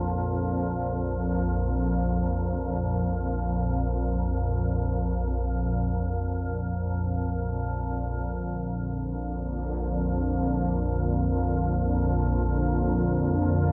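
Soaked in a dreamy plate reverb, this desolate, dark ambient drone in Bb major drifts in free time and is cut from a longer piece. An up-front, organ-like drone, detuned and thickened with ensemble chorus, holds the low register from the start, calm and slowly evolving. At 8.2 seconds a bright, resonant sawtooth pad fades in from the background with a filter swell, its sustained, chorused chords hovering above the gloom.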